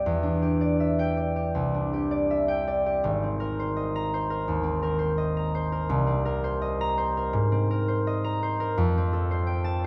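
A solo concert harp carries this gentle, wistful classical piece, fingerpicked and ringing, sitting up front in the sound. The playing moves with an uneven, rubato pulse in 4/4, and the harp spans a broad range from a deep Ab1 up to Bb5. The harmony drifts through colored chords, from Em7 and Cadd9 to Abadd9, Cm7 and a closing Fadd9 near 8.8 seconds. A moderate recital hall reverb surrounds the instrument, and the production leans dark and warm. The passage lasts just under ten seconds and is cut from a longer piece.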